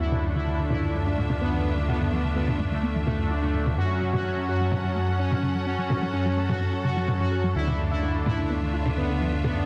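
A straight 4/4 pulse at 127 BPM drives this hypnotic, dramatic melodic techno excerpt, with overdriven electronic toms sitting in the background under a filter sweep while a dark detuned saw bass rumbles and beats beneath chords moving from Dmadd9 to F#m and back. A bold, fat analog synth brass carries the melody with chorus and digital delay, alongside soft-attack stabs from a brassy analog pad with vibrato and tape echo, and a tight sequenced synth runs mellow, wave-folded arpeggios through chorus, phaser and tape echo. A very quiet swarming, warbling drone and a biting, lush symphonic string section add tension and shimmer, all set in light reverb and a dense, heavily limited modern master.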